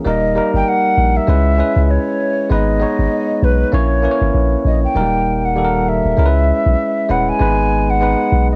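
A swung sixteenth-note afrobeats groove sets a smooth, hypnotic mood in this short cut from a longer piece, where a bell-like tine electric piano, colored by cassette tape, carries the chords up front, a punchy sine sub bass with a pitch-drop attack sits deep beneath it, and an airy, hollow jazz flute sings the melody with vibrato and a crisp chiff, all within a lightly reverberant home-cassette sound that shifts into a second section at 5.0 seconds.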